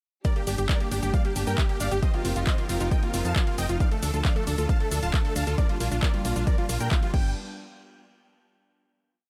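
A huge, detuned supersaw lead carries a euphoric sixteenth-note riff in thirds and sixths over a pedal note, with sidechain pumping and tape echo, doubled very quietly by a bright unison pluck, across this bittersweet uplifting trance drop in G minor at 135 BPM, where a phased, delayed pluck arpeggio and intimate bowed strings sit in the background, a round FM bass gallops in from 0.5 s under an overdriven four-on-the-floor kick and a techno kit of claps, hats, shaker and crash, all set in digital ambience before a final hit at 7.4 s.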